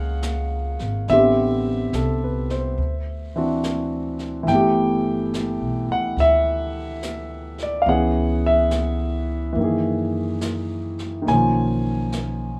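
A rough home demo mix in a small room, touched with light reverb, gives this brief cut from a longer jazz ballad an intimate, late-night closeness. The tempo sits at 71 BPM in 4/4 with a swung eighth-note feel. Up front, a warm grand piano carries the accompaniment from D3 to G#5, moving through lush extended harmonies from F#add9 and Am11 to D9, G69 and C#m7 before settling on Bmaj9#11. Beneath it, a pizzicato upright bass with gut strings plays low between G1 and F#2, its tone woody and thumpy. From 0.2 s a softly placed acoustic brush kit adds brushed snare and hi-hat, with a medium-tuned snare and a natural small-room character. The whole passage runs about 12.6 seconds as a single unhurried section.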